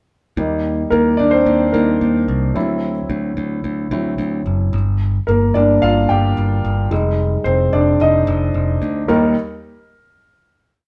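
A concert grand piano with audible action noise and a bright, growly picked electric bass open this short, uplifting piano-driven pop piece in Eb major at 110 BPM, the intimate piano carrying the lead in eighth-note chords through Eb, D7, Gm and Fm7 over the bass's driving eighths, all in a live, wet stone-room reverb before settling on a final Eb chord at 9.1 seconds.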